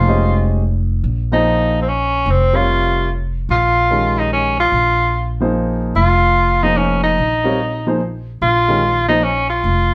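A clear, vintage-toned tenor saxophone carries the solo melody up front, shaping its lines with light vibrato and scooped notes in a hypnotic, intense modal jazz passage that swings in 3/4 over a single Bbm11 harmony. A woody pizzicato upright bass sits prominently beneath it, while a warm grand piano accompanies until 9.2 s. The band plays together live in one room with moderate studio reverb, and the passage is cut from a longer piece.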